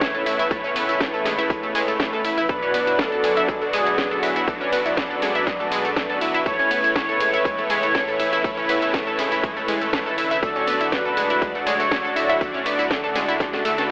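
The whole mix comes through a narrow telephone-like filter and sits in a moderate hall reverb, giving this euphoric, expansive progressive house passage a distant, boxy sheen that is cut from a longer piece. A smooth, expressive synth lead with vibrato and a wave-folded edge carries the melody through chorus and digital delay, dropping out at 12.3 s. Beneath it, a thick, airy unison pad holds sustained chords in the background. A warbling, detuned analog pluck spins bright arpeggios, while a soft-attack supersaw sits up front with stabs, and a round, deep analog bass stays low in the mix. Every melodic part and the bass breathe with sidechain pumping. A punchy, overdriven electronic kick and a house kit with a cracking snare, hi-hat, ride, and tambourine drive the straight feel, with a drum fill at 13.4 s, as the chords move from Aadd9 to Bm, back to Aadd9 and on to D.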